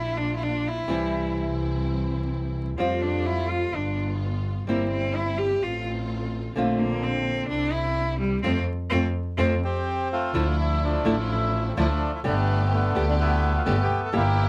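In a rubato 4/4 at 127 BPM, this melancholic, sultry tango opens in F major with a clear, bowed cello taking a smooth solo with vibrato, over a close, bowed double bass and distant, lush string-section stabs with portamento, joined at 0.9 seconds by fingerpicked nylon-string guitar. The band adds an accent from 8.4 seconds, and at 9.6 seconds a reedy, vintage bandoneon takes the melody up front as the music turns to D minor. Light reverb and vinyl crackle colour the sound of this excerpt, which is cut from a longer piece.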